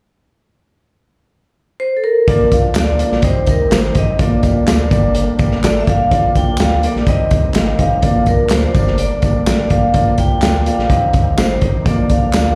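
A vibraphone struck with medium hard mallets carries the melody of this uptempo 1960s-style soul excerpt, its metallic, ringing tone colored by a slow motor vibrato and a slapback echo, and it enters alone at 1.8 seconds. At 2.3 seconds the full band arrives: a crunchy breakbeat drum kit sits up front with a tight kick, a medium-tuned snare and hi-hat, sounding saturated and gritty with a rolled-off top. Beneath it, a deep, full sub bass with an added octave holds the low end, while a woody upright piano with long sustain fills out the accompaniment. A reedy tonewheel organ with key click and fast rotary speaker sustains chords very quietly in the background, and tambourine, maracas and group handclaps add close, dry percussion far back in the mix. The chords cycle through Bb, Cm and Gm in a straight 4/4 feel, and the whole thing sounds like a live gig heard through a club PA, giving a joyful, warm mood.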